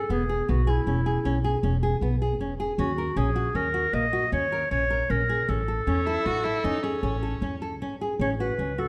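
A soft-attack clarinet sings the melody over fingerpicked nylon-string guitar arpeggios with warm fresh strings, joined almost at once by a woody, thumpy pizzicato upright bass, in a restless yet hopeful chamber piece in an uneven 7/4 metre. At 5.9 seconds a single bowed viola adds a smooth, rich second line with vibrato, falling away at 7.6 seconds. The whole passage, cut from a longer work, sits in the moderate reverb of a recital hall.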